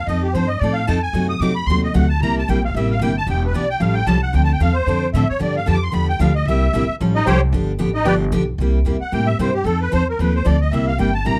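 Jazz manouche with a lively, playful swing, this short cut from a longer piece features a reedy, shimmering musette accordion soloing up front throughout, backed by a woody, gut-strung pizzicato upright bass and a bright, full-bodied picked steel-string acoustic guitar, all captured close and detailed in light reverb.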